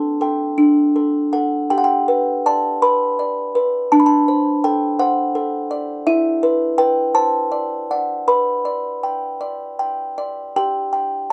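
A classical lullaby for solo music box, innocent and tender, drifts in a rubato 6/8 at 52-56 BPM in G major (tuned to A4 = 439 Hz), its delicate, tinkling yet dark plucked tones sitting up front in light reverb as they span D4 to B5 over a gentle progression from Dsus4 through G, D7, E5 and G/B before the 11.3-second fragment of a longer piece falls silent.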